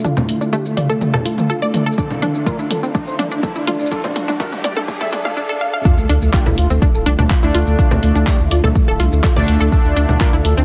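Dramatic and hypnotic, this melodic techno excerpt in D minor at 124 BPM opens with a build-up, where a drum fill rolls across a tape-toned deep house kit of congas, handclaps, hi-hat, shaker and toms, while filter sweeps shape a bright, detuned unison pluck arpeggio and an expressive, vibrato-laden sawtooth lead with lush chorus and dub echo. A thick, warbling vintage pad holds sustained chords in the background, a round, nasal analog bass enters at 0.2 s, fat brassy synth stabs with delay arrive at 0.5 s, and a deep, up-front electronic kick joins at 2.0 s as a riser and swell climb toward the drop at 5.9 s, marked by an impact and sub drop. Sidechain pumping makes the bass, pad, pluck, lead and brass breathe with the beat, all set in light digital ambience under a heavily compressed, radio-like sound.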